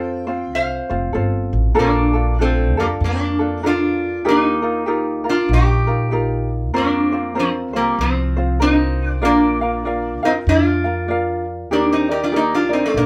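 Sunny and dreamy, this swinging Hawaiian excerpt features a metal-body resonator slide guitar that carries the melody up front with a metallic, nasal voice, played with fingerpicks and slide. A light, thumb-plucked ukulele supplies accompaniment and a woody, thumpy upright bass on steel strings, played pizzicato, holds the low end, each close in the mix. The band plays live together in a studio room with moderate ambience, drifting from F through chords like Bbmaj7 at 1.8 seconds and Ebadd9 toward a closing Ebmaj7.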